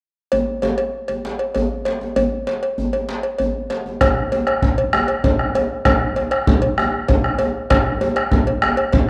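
This is a powerful, driving passage of West African traditional drumming, cut from a longer piece and moving at 130 BPM in 12/8 with a straight feel. A metallic cowbell, close and dry, opens at 0.3 seconds alongside a djembe whose deep, warm tone carries metal rattles and hard hands, set up front yet with the distance of a large room. At 4.0 seconds a second section begins as the bombo enters, deep and dark. The bombo is the loudest voice in the ensemble and, like the djembe, sounds both up front and distant in a large room. All three parts play on to the end at 9.1 seconds, wrapped in a wet echo chamber reverb with studio ambience.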